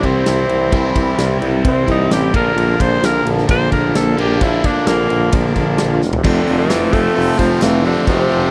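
Classic rock with a confident, sunny mood, this excerpt opens on a raspy, up-front tenor saxophone solo over two bright overdriven guitar riffs (one from a semi-hollow guitar with phaser, tucked in the background), a clear tuba bass line, a big, punchy rock drum kit and a barely audible tonewheel organ holding sustained chords through a rotary speaker. A drum fill at 6.0 seconds leads into a new section at 6.2 seconds, where a very quiet, double-tracked fuzz guitar joins the riffing, a mellow reed electric piano with fast tremolo adds accompaniment just after, and a jingly tambourine appears briefly from 6.7 seconds. The sound is a dry, close 1970s-style studio recording with light reverb.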